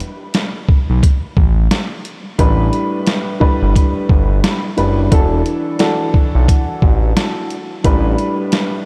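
Boom-bap hip-hop with a gritty, dark mood and a swung 16th-note feel, this short cut opens on a compressed, pitched-down sampler-style drum kit with a thumpy kick, medium-tuned snare and hi-hat, joined at 0.9 seconds by a smooth, detuned sawtooth and square-wave synth bass with a moving notch, and at 2.4 seconds by a woody, vintage upright piano, filtered at both ends, moving through suspended ninth chords in light digital reverb.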